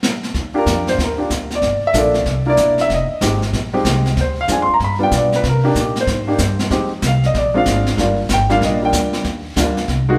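This jazz piano trio swings briskly in 4/4, with a sophisticated, swinging mood, in a short passage cut from a longer performance. The brush drum kit opens at 0.0 seconds, with brushes on a medium-tuned snare alongside hi-hat and a boomy kick. The upright bass joins at 0.3 seconds, its pizzicato gut strings sounding woody and thumpy. The warm baby grand piano enters at 0.5 seconds and carries the melody as a solo, sitting present and up front over the others. The harmony moves from Ebmaj7 through Gm7, C7, Fm7, Dm7b5, G7, Cm7, Fm7 and Bb7 before settling back on Ebmaj7. The three players sound as if they are performing together in one large studio, with a moderate reverb lending the room a natural depth.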